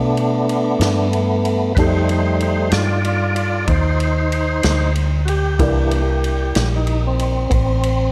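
Slow blues in 12/8 at 63 BPM, soulful and swaggering, where a lightly overdriven tonewheel organ takes a full, up-front solo through slow rotary speaker and chorus vibrato over G9, F9 and C9 chords, backed by a round, foam-muted fingered electric bass, a natural country drum kit with punchy kick, snare and ride entering at 0.2 seconds, and a mellow grand piano with slapback echo sitting in the background, all bathed in a lush hall reverb that gives a big arena sound to this short cut from a longer piece.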